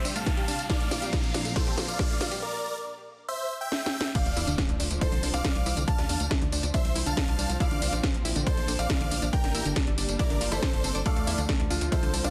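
Uplifting trance at 139 BPM in D minor, emotional and driving, cut from a longer piece. It opens on a build-up with a huge, euphoric supersaw lead carrying the melody over background strings with a smooth top, a round analog pluck playing arpeggios through a filter sweep with chorus and tape echo, a riser in the background, a punchy electronic kick, and drum fills on the techno kit with its cracking snare and metallic hats. After a brief break, the drop lands at 4.2 seconds with an impact and a tight sequencer bass with a sawtooth bite, while a dark, mellow grand piano adds a second line with tape echo. The chords move through Dm, Csus4, Bbsus2 and Gm, and sidechain pumping runs through the lead, strings, pluck, bass, piano and the kit's hats, percussion and cymbals. At 11.1 seconds a soft, felt-muted upright piano joins with audible action noise and dub echo. The sound is dense and heavily limited, set in light digital ambience.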